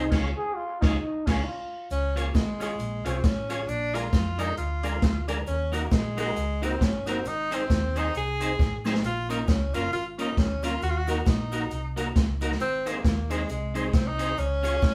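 Ska at 135 BPM in Db major, joyful and cheerful with a swung eighth-note feel, this cut opens with a raspy, growling trombone solo over a band accent before a clear, close-miked tenor saxophone takes the melody at 1.9 seconds. Twangy, slightly broken-up electric guitar with tremolo and a percussive, mellow tonewheel organ stabbing through a fast rotary speaker and chorus vibrato sit above a round hollow-body bass, while a boomy big-band drum kit with dark cymbals plays up front and drops a fill at 8.6 seconds. A very quiet, grainy cabasa enters with the saxophone, and the band plays live in one room under a wet studio reverb.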